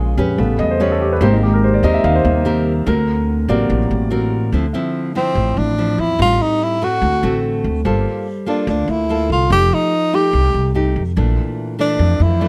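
A breathy tenor saxophone enters at 5.2 seconds with a mellow, subtone jazz melody, using scooped notes and light vibrato as the harmony settles into D minor in this intimate, wistful bossa nova, taken from a longer piece at 145 BPM in a straight 4/4. Underneath, a bright fingerpicked classical nylon-string guitar and a warm grand piano, whose action noise can be heard, play accompaniment, while a woody, growly pizzicato upright bass carries the low end. The chords are rich and extended, and the close, detailed recording has little reverb, so every part sounds up front and dry.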